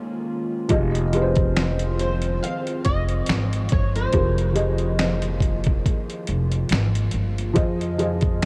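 A gritty, overdriven sampler-style drum kit of thumpy kick, fat snare, hi-hat and finger snaps arrives up front at 0.7 seconds alongside a woody pizzicato upright bass, giving this nostalgic, melancholic lo-fi hip hop excerpt its swung, unhurried pulse. A felt-muted upright piano with audible action noise and a slow-blooming, warbling tape-like pad carry the chords, while a bright fingerpicked flamenco guitar, complete with finger squeak, lush chorus and tape echo, sings the melody until 5.2 seconds. Everything sits in a dreamy, reverb-soaked cassette haze.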